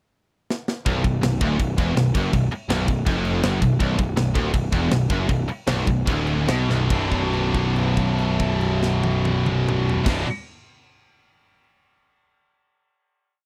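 A drum fill at 0.5 seconds opens this short, relentless and dark heavy metal piece in B minor at 140-164 BPM in 4/4, where an up-front acoustic kit with bright cymbals, a medium-tuned snare and a tight kick drives the groove while, from 0.9 seconds, a scooped high-gain guitar, a tight distorted guitar and a double-tracked distorted guitar play single-note riffs in the background, doubled by a growly fuzz-drenched picked bass in driving eighth notes, the riff slowing down before a final B minor chord is held from 6.9 seconds in a dry, close, 1970s-style studio sound.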